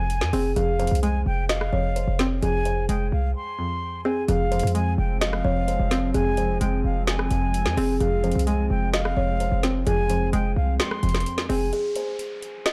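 Opening on a kalimba's woody thumb-plucked melody over a breathy concert flute line with tape echo, a twangy, nasal resonator pluck, a punchy, up-front 808-style bass and a brief downlifter, with trap drums featuring a woody snare and metallic hats entering at 0.1 seconds, this melancholic, eerie half-time trap excerpt in F minor at 129 BPM rests on an F minor chord, adds a hollow, detuned soft pad at 4.3 seconds after a short break, and ends with a filter sweep and a second downlifter from 11.7 seconds as the kalimba and drums carry on briefly in a dark digital ambience.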